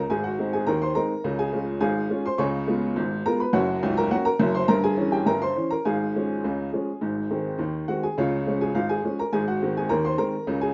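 Ragtime piano in D-flat major, this short cut from a longer piece has a playful, jaunty mood at 104 BPM in a straight 2/4. A clear upright piano plays solo throughout its 10.7 seconds, spanning from Db1 up to Db6, its tone woody and boxy and set up front. The harmony moves from Ab7 to Db and Db7, then on to Gb, a Gdim7 near 4.7 seconds, Db/Ab and Ab before settling on Db and closing on Ab7. A wet studio reverb gives the piano a short tail. The sound is that of a rough home demo mix, dull in the upper treble.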